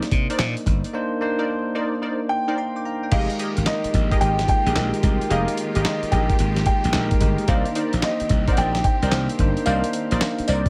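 A gritty, tape-warm sampler-style drum kit with a thumpy kick, handclaps and tambourine opens this punchy, bouncy new jack swing cut together with a bell-like tine electric piano under analog chorus and funky detuned polysynth stabs, while a growly, glassy slap bass sits up front beside the drums. At 2.3 seconds a baby grand piano with an open tone carries the melody, and from 3.1 seconds a lush bowed string section adds smooth sustained chords in the background as the harmony moves from Cm9 to Fm11. Light reverb surrounds the swung groove, which returns to Cm9 at 7.5 seconds in this fragment of a longer piece.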